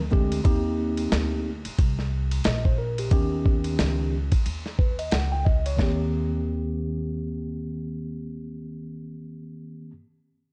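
Dark, lightly reverberant studio sound frames this relaxed, swung jazz-hop cut at 90 BPM in Eb major, where a gritty, compressed sampler-style drum kit with a thumpy kick and medium-tuned snare, hi-hat and ride sits up front until 6.0 seconds, while a worn, slightly out-of-tune tine electric piano, lightly overdriven through its built-in speakers, moves from Eb6 to Ebaug7 and back over a woody pizzicato upright bass.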